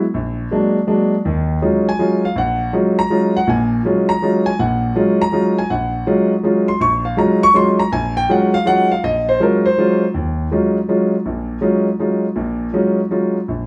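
Jazz waltz excerpt with a cool, spiritual mood, featuring a solo concert grand piano with deep bass and a natural, up-front sound, swinging in three across a range from low Bb to high Db in a moderately reverberant room, moving from its opening section into a contrasting passage at 10.1 seconds.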